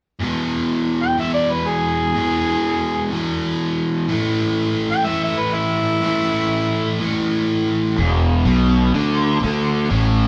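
Raunchy and driving, this swung rock excerpt at 124 BPM in E mixolydian opens with a biting, double-tracked overdriven guitar riff, joined at 1.0 s by a gritty, amplified harmonica solo with light vibrato and tongue slaps, before a growly fuzz bass punches in at 8.0 s as the chords move from E through A5 to E5, all captured live in one room with a stone reverb.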